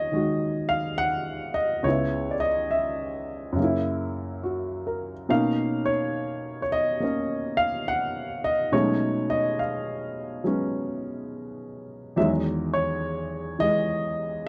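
Swung eighth notes move at an unhurried ballad pace in 4/4 through this smoky, moody stretch of solo jazz piano, cut from a longer piece. A dark, mellow baby grand sits up front and intimate, its short sustain and audible action noise heard close in a dry 1970s-style studio with light reverb. The harmony drifts from Ebm7 and Dbm7 through Gb7 to a lush Bmaj9, then B13, before settling on Emaj9 at 12.2 seconds.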